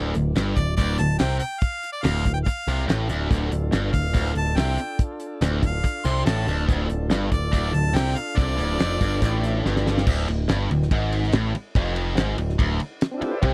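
Brooding and gritty, this classic rock passage, cut from a longer piece, pairs a tight, double-tracked distorted guitar riff with growling, punchy overdriven bass and a damped 70s drum kit with a fat snare and dark cymbals, while a bright harmonica with light vibrato carries the melody from 0.6 s and a thick tonewheel organ through a slow rotary speaker holds background chords from 3.3 s, captured in a dry, close 1970s-style studio recording that features a drum fill at 9.6 s.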